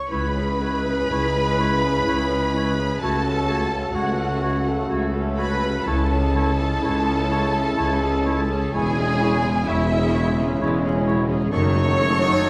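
A lush violin section carries the yearning melody high above the orchestra, its bowed line focused and shaded with vibrato, while a second violin section sings beneath it with a soft attack and expressive phrasing. This is a slow, melancholic romantic movement for symphony orchestra in triple time, its uneven beats stretched with rubato. A pure, crisp flute shares the melody's register in the background, joined on supporting lines by a distant, roomy oboe and a very quiet clarinet, while a chamber viola section fills in the accompaniment. A tight trumpet section punches out stabs, and a clear trombone section and a mellow French horn section hold sustained chords. Rich, even cellos, a distant double bass section and a tuba anchor the bass, heard in a wet concert hall reverb with vinyl crackle over this passage cut from a longer piece.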